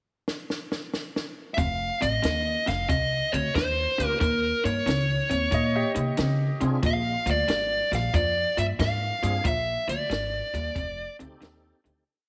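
A compact cocktail drum kit opens this rollicking, soulful electric blues shuffle at 92 BPM with a dry fill on its high-tuned snare and punchy kick, before a woody, thumpy pizzicato upright bass and a slightly broken-up, lo-fi guitar riff through a small old amp settle into a boogie figure over F7, Eb7 and Bb7. Up front, a dark, overdriven lead guitar states hook-like motifs, while from 4.0 s a full tonewheel organ with slow rotary speaker, chorus vibrato and key click comps syncopated rootless voicings in the background. A brilliant, polished upright piano adds answering blues licks between 5.5 and 6.7 s, and the whole piece fades out in a small, lightly reverberant room.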